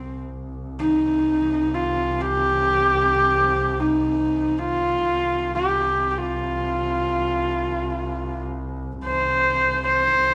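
In free time, this short Mongolian folk fragment in C yu mode feels windswept and vast, cut from a longer piece and lasting 10.3 seconds. A husky, up-front horsehead fiddle carries the melody between C4 and C5 with light vibrato, portamento and an airy bow, while a bowed double bass sits lower in the mix, holding a clear, focused drone on C2 with its own vibrato. The two players sound live together in a stone room whose reverb, lasting 1.3 seconds, gives the intimate fiddle a sense of open space.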